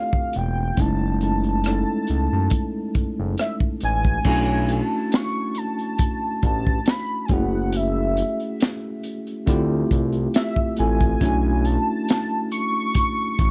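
A velvety, detuned synth lead with chorus, tape echo and vibrato opens this sultry, soulful neo-soul fragment at a slow 69 BPM in B dorian over a clean tine electric piano, joined at 0.1 seconds by a gritty, saturated breakbeat kit with dark cymbals, a high-tuned snare and a punchy kick, and at 0.4 seconds by a smooth sawtooth-and-square synth bass with a moving notch, all set in a dry, close 1970s-style studio sound as the chords drift through Dm9, F#m9 and Bm9.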